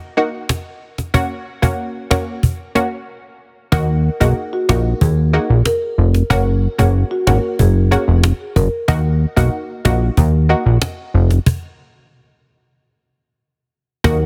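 Dancehall in Eb minor at 93 BPM, tough and hypnotic, built on a punchy, detuned chord stab with chorus and a snappy, close, dry cajon, joined at 3.7 seconds by an up-front, funky analog bass with ring modulation and a filter sweep. A woody, band-limited marimba carries the melody through a digital delay over Ebm and Gb chords, and a glassy FM pad surfaces barely audibly at the very end. A stop at 11.5 seconds breaks the groove in this dense, heavily limited studio mix cut from a longer piece.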